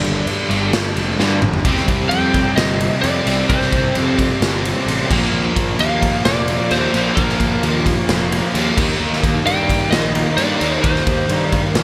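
A bright, 1980s-style digital production with small-room ambience frames this driving, aggressive hard rock excerpt at 130 BPM, where a gritty, up-front garage drum kit with punchy kick and a drum fill from 1.2 to 1.6 seconds drives a fuzz-laden bass, a double-tracked high-gain distorted guitar riff joined at 0.5 seconds by crunchy chorused and hollow-body spring-reverb guitars, a twangy, compressed lead guitar melody with delay entering at 2.1 seconds, and a very quiet, flute-like tonewheel organ holding chords beneath, over a progression of G5, C5, Bb5 and Eb.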